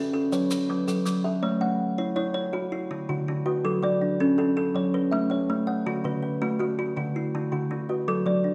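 Two kalimbas open together in a rippling, southern African traditional, mbira-style interlocking cycle at 108 BPM in 12/8: one has a woody, hollow-boxed, ringing thumbnail pluck with a vintage edge up front, and the other has a mellow, soft fingertip pluck on a solid board sitting a touch further back, their arpeggios cycling through F#m, A and D in a wet recital hall, while grainy maracas sound close by only from 0.3 to 1.2 seconds in this passage cut from a longer piece.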